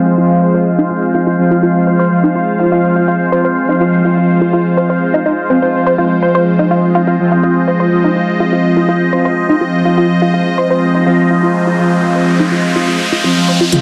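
A bright, morphing wavetable pad and bold, brassy synth stabs open this dramatic, melancholic melodic techno excerpt in F minor at 124 BPM, as a filter sweep runs across the pad through the whole passage, a tight, driving sawtooth arpeggio with chorus and tape echo joins almost at once, an electronic riser enters at 11.0 seconds, and a house drum kit with metallic hi-hats and toms arrives only at 13.7 seconds, all set in a lush hall reverb under a dense, heavily limited master.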